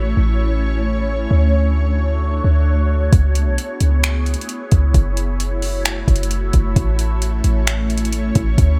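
Atmospheric cloud-rap in a half-time hip hop feel, this hazy, ethereal excerpt opens on an airy, detuned pad with chorus, reverb and phaser drifting through A, Dmaj7, C#m7 and F#m7 over a deep, boomy sine 808 bass, until a smooth R&B kit of finger snaps, metallic hi-hat and soft kick enters up front at 3.1 seconds.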